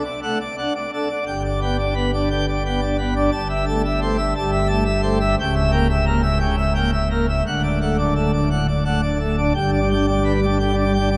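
Moving in a straight, steady 4/4, this jubilant and majestic classical organ toccata, cut from a longer piece, features a solo pipe organ on full plenum with brilliant mixtures and romantic voicing, set up front yet bathed in a vast, echoing space whose 8.0-second reverb rings out as the harmony travels from D through Am7/G and C#dim7 before resolving to G at 9.6 seconds.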